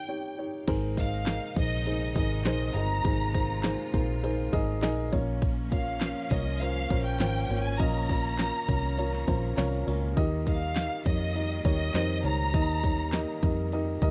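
A rich, expressive violin section carries the melody of this hopeful, uplifting piano-driven pop fragment, its lush vibrato set at a distance and trailed by tape echo until it drops out at 13.4 seconds. Beside it from the very start, a dark upright piano plays the accompaniment with a woody, boxy, up-front tone over a brief break on an Eb7 chord. At 0.7 seconds the full band arrives on Abadd9: a round, foam-muted vintage electric bass with an amped, punchy tone, a clear bowed string section holding sustained chords in the background, and a layered, electronic pop drum kit with a punchy kick, fat snare, handclaps, hi-hat, ride and crash cymbals. The harmony moves on through Bbm to Eb in a straight 4/4 feel. The sound is a dry, close 1970s-style studio recording with small room ambience, and the piece is cut from a longer work.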